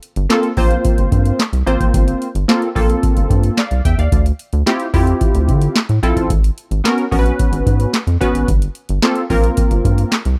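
A late-night, danceable stretch of early-eighties boogie funk in G dorian at 110 BPM, cut from a longer piece, built on a booming analog drum machine with a deep kick, crisp snare, metallic hats and handclaps caught in a short room. A rubbery, hollow square-wave bass with a resonant filter pluck sits up front from 0.2 seconds, while a punchy, detuned sawtooth polysynth with ring modulation and chorus comps over chords moving from Gm11 through Dm11 and Abm11 back to Gm11. The sound is dry and close, like a 1970s-style studio recording.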